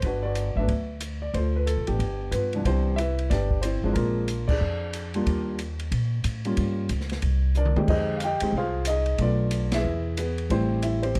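A warm, up-front concert grand with deep bass and short sustain carries the melody in this relaxed, swinging jazz piano trio excerpt, over a woody, thumpy pizzicato upright bass on gut strings and an airy, polished drum kit with dark cymbals and a boomy kick, the trio striking accents together at 4.5 and 9.7 seconds around a brief drum fill at 7.6 seconds, in a dark, warm, lightly reverberant production.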